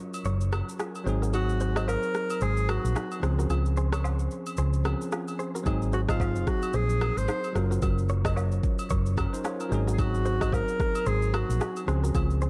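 Joyful and breezy, this afrobeats cut moves at 111 BPM in 4/4 with a swung sixteenth feel in Ab mixolydian, cycling through Gbmaj7, Ab7 and Dbmaj7 and opening on a break that lasts until 5.7 seconds. A round, amped hollow-body bass sits up front beneath an electronic drum kit with a deep kick, rim click and shaker, while acoustic agogo bells, woodblock, egg shaker and group handclaps stay in the background. A bell-like, barky tine electric piano and a twangy, compressed clean guitar riff dressed in spring reverb and tape echo fill out the accompaniment, and a breathy alto saxophone with vibrato carries the melody from 1.3 seconds, its own tape echo trailing through a dark, warm production bathed in digital ambience.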